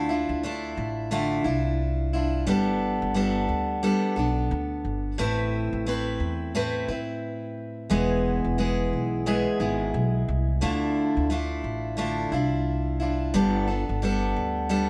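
Wistful and tender, this short acoustic pop excerpt moves at 88 BPM in 4/4 with a gentle swing on the sixteenths. A picked steel-string acoustic guitar sits up front with a warm, auditorium-sized body, carrying the accompaniment through chords like Dmadd9, Gadd9, Amadd9 and E, while a pizzicato upright bass with gut strings adds a woody, dark, thumpy foundation beneath it. Both instruments play throughout the 14.9 seconds, framed by light reverb.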